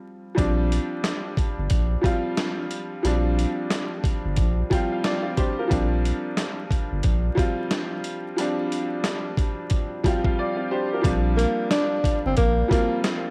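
Boom-bap hip-hop with a soulful, swung feel and a home-cassette sound dusted with vinyl crackle, where a brilliant, woody upright piano with audible action noise opens alone before gritty, compressed sampler-style drums with a thumpy kick and a deep, thick saturated sub bass join at 0.4 s, and a mellow, breathy tenor saxophone with vibrato, scooped notes and analog delay takes a jazz-style solo from 11.4 s.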